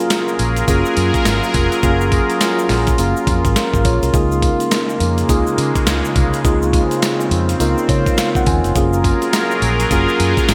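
Upbeat and flirty, this short cut of new jack swing R&B rides a swung sixteenth-note groove in four. A mellow tine electric piano, clean and played through its built-in speakers, carries the accompaniment over a bright, evolving sawtooth pad that holds sustained chords with a slow attack, long release and chorus, sitting up front. The sampler-style drum kit is gritty and compressed, with a thumpy kick, medium-tuned snare, hi-hat and tambourine soaked in gated reverb, while a grainy tube shaker stays in the background. A foam-muted, round and punchy fingered electric bass enters at 0.4 seconds, and the electric piano adds a fill from 7.6 to 8.8 seconds as the harmony moves from Gbmaj9 to Db6 and back. The plate reverb and bright 1980s-style digital production give the whole track a polished sheen.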